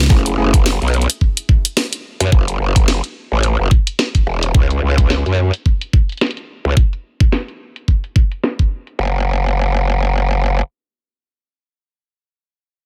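Funky and playful, this glitch hop cut from a longer piece rides a swung sixteenth-note feel in 4/4. An up-front electronic kick with a knocking, layered punch anchors the groove until 8.7 seconds, while a drum and bass kit adds low-pass-filtered hi-hats and a cracking snare, with a filter sweep running across the drums until 9.0 seconds. The up-front growl bass is a saturated, wobbling, formant-filtered voice with chorus and overdrive that sustains until 10.6 seconds. A bell-like tine electric piano lands brief, clean stabs at the very start, treated with sidechain pumping and digital delay. The harmony moves from F#m7 to C#sus4 before the chords drop out at 9.0 seconds, and the dry, close sound keeps every part direct and present.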